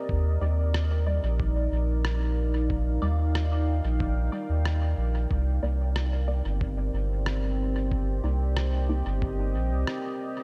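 Lightly reverberant and spacious, this moody ambient dub excerpt rests on a dark, detuned sawtooth pad with chorus, holding sustained chords that move from Ebmaj7 to Cm9 at 5.3 seconds. Up front, a round, soft sub bass with tube saturation sits beneath a muffled, thumpy sampler-style kick and a pitched-down rim click carrying dub echo, both with a tape-warm tint. In the background, a muted, filtered chord stab sounds short plucked chords through phaser, subtle chorus and dub echo.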